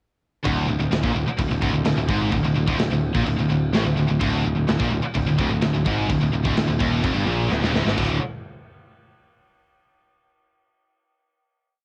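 A growly, punchy electric bass drives up front, doubling the single-note riff played by a bright heavy high-gain guitar and two scooped high-gain guitars (one double-tracked) that sit back in a distorted, cassette-tape grit, while a tight, saturated metal kit with crash, kick and snare pushes a metal drive groove, fills at 7.5 s and gives way to a final chord at 8.0 s in this short, relentless and epic heavy metal piece recorded at home in light reverb.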